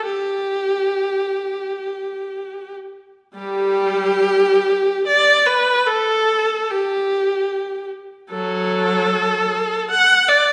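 Moving in free time with an expressive pulse, this classical passage for unaccompanied viola sits in G major and carries a nostalgic, lyrical mood. A single bowed viola plays throughout, from 0.0 to 10.5 seconds, ranging from F#3 up to F#5 with a rich, focused tone and vibrato. The instrument sits up front, close and present, while a recital hall reverb with a 1.5-second decay surrounds it in a resonant, church-like space. The music falls into two parts, with the opening phrase giving way to a new passage at 3.4 seconds that carries through to the close. Lossy compression artefacts tint the sound, and the clip is cut from a longer piece.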